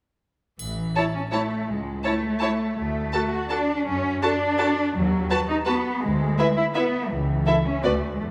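Up front, a cello section with a soft attack, expressive portamento and vibrato opens this playful, whimsical film cue in A major at 166 BPM in 3/4 together with a smooth, even double bass section and a brief, close, dry triangle at 0.6 s, while from 1.0 s a dark, woody violin section carries the magical melody over a background second violin line and lush viola accompaniment, the strings sitting in a moderate scoring-stage reverb in this short cut from a longer piece.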